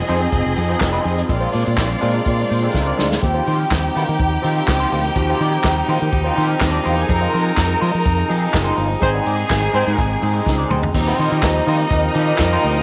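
Glamorous and joyful, this straight-feel disco excerpt is cut from a longer piece. A punchy kick, a medium-tuned snare, handclaps, hi-hat, toms and dark crash cymbals from a vintage kit sit in a natural studio room beside a bright, up-front fingered electric bass. A clear, focused string section carries the second line with bowed vibrato. Tucked into the background are a barky tine electric piano with analog chorus and a clean, picked electric guitar through wah. A muted, stopped French horn section with a nasal, metallic, distant tone enters at 3.2 seconds on sustained chords, and a tight pop-style horn section adds stabs from 9.0 seconds under a band accent. Tine electric piano and drum fills mark the turns before a return to the Eb69 harmony at 11.0 seconds, all bathed in light studio reverb.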